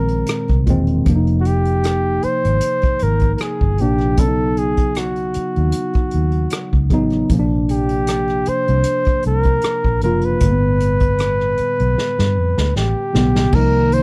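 A warm, close-miked flugelhorn carries a smooth, late-night jazz-style melody with scooped notes over a worn, slightly out-of-tune tine electric piano touched with subtle chorus, while a dark, foam-muted fingered bass keeps the low end round in this 77 BPM R&B and neo-soul excerpt with a light sixteenth-note swing. An acoustic drum kit played with bundle sticks sits in a roomy studio space, pairing a punchy kick and medium-tuned snare with rim clicks and dark cymbals. A drum fill runs from 12.0 to 13.5 seconds, after which a shimmering, retro pulse-width pad slips in behind the band with a slow attack.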